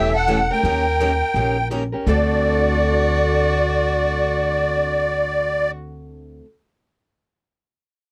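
A musette accordion carries the melody from the first moment, reedy and shimmering with its wet tuning and close, dry presence, while a single bowed violin traces a second line with vibrato and expressive portamento. This is charming, swinging acoustic string swing in the jazz manouche style at 167 BPM, with two picked steel-string acoustic guitars in the background, one dark and one bright and full-bodied, and a growly, thumpy pizzicato upright bass up front. Light reverb and a cassette tape sound colour this short cut from a longer piece, with the accordion and violin stopping at 5.7 seconds as the guitars ring on to 6.5.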